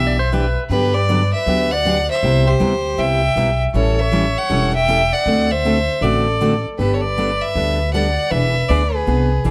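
A brief, twangy pedal steel phrase opens this playful western swing excerpt alongside a clear, biting fiddle melody, a bright, full-bodied picked acoustic guitar and a woody, growly upright bass that sits up front. At 0.7 seconds a dark, boxy second fiddle takes over the supporting line beneath the lead, as the swung 158 BPM groove in G major moves through jazzy changes from Gmaj7 and Cmaj7 to A7, D7 and E7. Light reverb gives the small band a little room.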